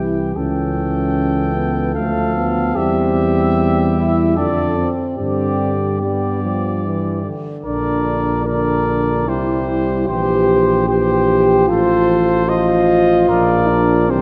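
A wet concert-hall reverb with a long 2.5-second decay surrounds this brief classical brass quintet passage, which is cut from a longer piece and carries a noble character in 3/4. All five instruments sound together from 0.0 to 14.2 seconds. A clear trumpet carries the melody between C5 and G5 with a soft attack and light vibrato, while a flugelhorn, punchy yet distant and roomy, shapes a second line just beneath it. A warm French horn stands out among the accompaniment, joined by a close-miked trombone sitting in the background in the low register. Up front, a mellow bass trombone with a smooth top anchors the bass from A1 to G2. The harmony moves from A7/C# through Dm, G and Bb before settling on F/A and closing on Bb.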